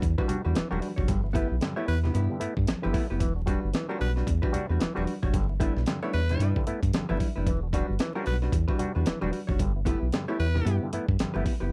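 Sly and driving, this dry, close 1970s-style funk snippet with vinyl crackle swings its 16ths over alternating Em9 and G6 chords, as a gritty breakbeat sampler-style kit with a thumpy kick and a deep, round analog bass sit up front beneath a dark, clean hollow-body jazz guitar, stringy overdriven clav stabs through auto-wah and very quiet, distant congas, while a raspy tenor saxophone with scooped notes and light vibrato enters at 1.9 seconds.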